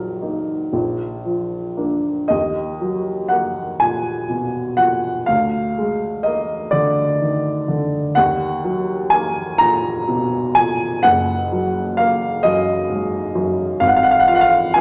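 A baby grand piano opens alone on an E-flat minor chord over B-flat, setting a melancholic, wistful tone for this brief romantic nocturne in E-flat minor. The pulse is slow, around 38-45 BPM in dotted quarters within a 12/8 metre, and the playing moves with a free rubato. The instrument sounds warm and natural, placed up front with a short sustain, and its range stretches from Gb1 in the deep bass to Bb5 above. A wet recital-hall reverb of about 1.7 seconds surrounds the notes and lends them a sense of space. The harmony settles on E-flat minor, leans through B-flat seventh and E-flat minor over G-flat, and ends at 13.8 seconds on F minor over A-flat, leaving this 14.8-second fragment of a longer piece unresolved.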